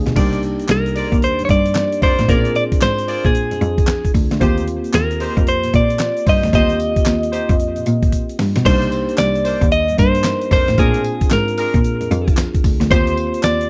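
A clean, picked electric guitar carries the melody up front from 0.7 seconds, bathed in spring reverb and tape echo, over a gritty, thumpy sampler-style drum kit with handclaps and tambourine, a focused bowed cello bass, tine electric piano with lush chorus, tight vintage horn stabs and a grainy egg shaker in the background, in a bouncy, flirty new jack swing R&B groove at 113 BPM with swung 16ths, moving through Cm9, Bb7 and Eb69 in a dry, close 1970s-style studio sound, with a drum fill at 8.1 seconds leading into the next section of this piece cut from a longer one.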